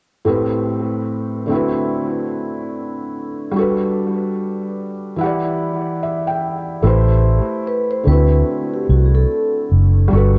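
A soft, intimate felt-muted upright piano opens this melancholic, hazy hip hop fragment with swung chords through a low-pass filter and analog delay, adding a fill at 5.6 seconds before a round, dark, foam-muted electric bass arrives up front at 6.8 seconds and a mellow vibraphone with soft mallets and slow motor vibrato, likewise filtered and delayed, carries a brief metallic, ringing melody from 7.7 seconds, the whole echo-heavy mix set in moderate spring reverb and cassette-tape grain.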